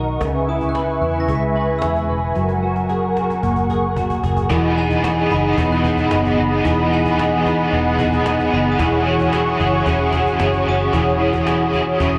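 A straight, steady 4/4 pulse at 112 BPM drives this blissful, ethereal dream pop excerpt, with a snappy cajon played by soft hands in the background, adding a fill from 2.4 to 4.5 seconds, under a dark, round, foam-muted electric bass. A smooth, detuned sawtooth pad holds sustained chords up front beside picked clean electric guitar arpeggios coated in ensemble chorus and delay, while a faint, bell-like glockenspiel with brass mallets rings through its own delay. At 4.5 seconds a bright, overdriven stack guitar joins with tremolo and chorus as the harmony moves from C#m7 and F#add9 to chords over an E bass, the whole mix bathed in lush hall reverb and a worn, warbling cassette-tape pitch drift.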